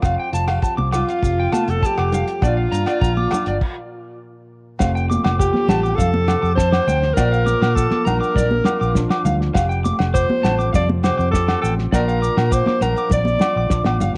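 A breathy, intimate alto saxophone with jazz-style vibrato carries the melody up front in this sunny, carefree highlife clip at 101 BPM in F major, entering at 0.9 seconds over twangy, slightly broken-up electric guitar arpeggios, a boxy ladder-braced acoustic guitar fingerpicked on old strings, a round amped bass, a dark cloth-damped drum kit with tight kick and rim clicks, high-tuned congas, ringing agogo bells and grainy maracas, all swaying between Fadd9 and Bb with a brief stop at 3.6 seconds, captured as a small-room home recording on cassette.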